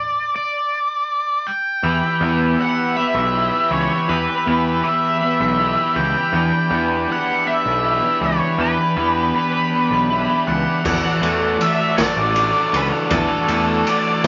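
A slow 6/8 pulse sets a hypnotic, mysterious mood in this psychedelic rock excerpt, cut from a longer piece. The octave-fuzz lead guitar opens alone, its dark, distorted melody colored by wah, until at 1.8 seconds the band enters on an Em chord. A buzzy, overdriven combo organ with light vibrato holds sustained chords above a double-tracked, overdriven electric guitar riff played through a rotary speaker, while a fuzz picked electric bass adds a round, punchy low end. At 10.9 seconds the harmony moves to D and a raw garage drum kit arrives, with a boomy kick, gritty saturation, pumping small-room sound and dark cymbals. The whole recording sits in a moderate studio ambience, with vinyl crackle and a muffled top end.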